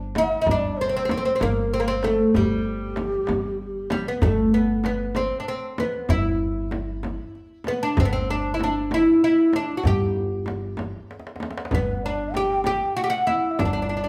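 A bright, woody oud sits up front, its plectrum-plucked double strings carrying the melody through this hypnotic, melancholic Persian modal ensemble piece in a slow 6/8. An upright bass anchors the low end on a dark, pizzicato pulse, while a frame drum and a tombak, both played with soft hands and recorded close and dry, keep a gentle rhythm, the tombak sitting deeper in the background. A breathy, mellow low ney adds an expressive second line with vibrato, heard from 0.2 seconds, then falling silent and returning at 11.7 seconds. The mode shifts from avaz esfahan to dastgah mahur at 4.2 seconds, and a short drum fill at 11.1 seconds marks the ney's return. The band plays live in one room, bathed in a wet, large studio reverb, in a passage cut from a longer piece.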